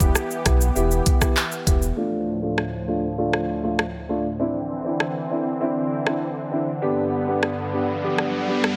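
Bouncy and hypnotic, this short dancehall cut from a longer piece moves at 99 BPM in a straight 4/4, set in D dorian over a chord cycle of Em, Dm, Cadd9 and G. An electronic island pop drum kit sits up front throughout, with a knocking kick, smooth hi-hats, handclaps, rim clicks and shaker. A dark, mellow concert grand piano carries the accompaniment with a boxy low end and a low-pass filter, while a lush, thick unison pad of detuned sawtooth voices holds sustained chords, its nasal, bright tone treated with chorus, sidechain pumping and filtering. A deep, full sub bass with an octave layer anchors the opening and stops at 1.9 seconds, just before a filter sweep begins at 2.0 seconds and runs to the end. An electronic riser enters at 7.6 seconds, and the whole mix sits in light reverb.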